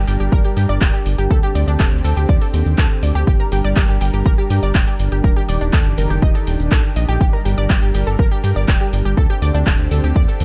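A straight 4/4 pulse at 122 BPM drives this dark, cinematic and melancholic melodic techno passage in G minor, cut from a longer piece, where a punchy, up-front electronic kick joins at 0.3 s beneath a house kit of handclaps, shaker and metallic hats, while a round, deep analog bass pumps against the sidechain, a lush, thick unison pad with chorus and a slow attack holds sustained chords through Gm, D7sus4 and Ebmaj7, and a bright, detuned analog pluck spins chorused, sidechain-pumped arpeggios through dub echo, set in a warm production with little reverb.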